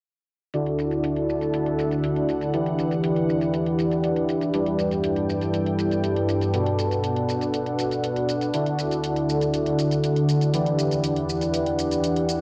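A soft, detuned supersaw playing stabs enters at 0.5 s with an electronic hi-hat and shaker, opening this expansive, uplifting progressive house excerpt at 120 BPM in D major. The supersaw sits up front with a smooth, unison sawtooth tone, a fast attack and sustained notes, shaped by a low-pass filter and dub echo. At 0.7 s an evolving wavetable pad joins beneath it, holding sustained chords with a slow attack and long release, its mellow, vintage, morphing, warbling sine character treated with phaser and built-in reverb. The layered drums stay low in the mix, with metallic hats and tape-warm percussion both rounded off by low-pass filters. The harmony moves every two seconds through Dadd9, Em7, G6 and Bm7 before returning to Dadd9 and Em7, and the three parts carry on together until 12.4 s in a dark production with light reverb.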